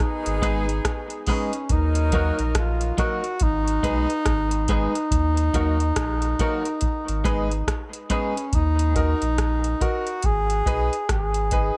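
A soft vintage rhythm box of deep kick, metallic hats and rim click opens this meditative, spacious dub reggae excerpt at 70 BPM with a swung 16th feel, joined at once by a warm bass clarinet melody up front and a clear horn section whose second line, dressed in dub echo, stops at 3.0 seconds. A round sine sub bass enters at 0.3 seconds, followed at 0.4 seconds by a twangy, scooped clean electric guitar and brilliant, worn concert grand piano stabs, both carrying dub echo, with the guitar dropping out at 8.4 seconds. The chords shift between Abm and Ebm throughout, all set in a small room ambience.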